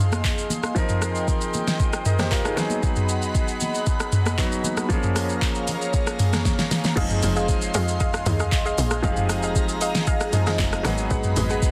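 A clear, intimate baby grand piano with audible action noise and an airy, breathy pad under chorus and phaser open this hypnotic, deep amapiano excerpt, joined by an up-front, overdriven R&B kit with a fat snare and damped, high-tuned congas in the background until a drum fill at 6.5 seconds leads into the drop at 7.0 seconds, bringing in a tight, punchy log drum bass and soft, round plucked stabs with chorus and digital delay, all in a dense, heavily limited mix with light reverb.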